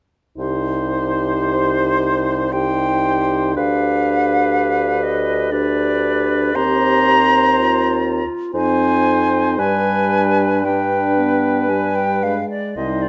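This classical slow movement for wind quintet, in a rubato triple metre, carries a yearning, solemn mood. The oboe, clarinet, French horn and bassoon all begin together at 0.4 seconds, with the bassoon's warm, lightly vibrato bass sitting up front beneath a mellow, smooth-topped horn and a clear clarinet placed in the background. The oboe adds a second line with a light vibrato in classical style. At 0.9 seconds the silver concert flute enters with the melody, its airy, metallic tone lifted in the highs, shaped by vibrato and a soft attack, and played expressively at the front of the ensemble. The harmony moves from C minor through G7/D, Cm/Eb and Fm7 before resting on G, and the passage, cut from a longer piece, closes at 13.1 seconds in a close, detailed recording with light reverb.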